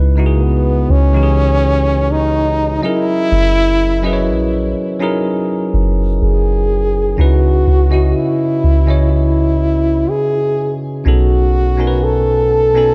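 A slow, straight 4/4 pulse at 62 BPM carries this sensual, longing contemporary R&B excerpt in C# minor, where a bell-like tine electric piano voices C#m9, F#13 and B13 chords over a deep, round 808-style bass, while from 0.4 seconds a solo French horn sings a vibrato-laced, classically styled melody through a diffuse ambient delay, all floating in a dreamy mix soaked in plate reverb.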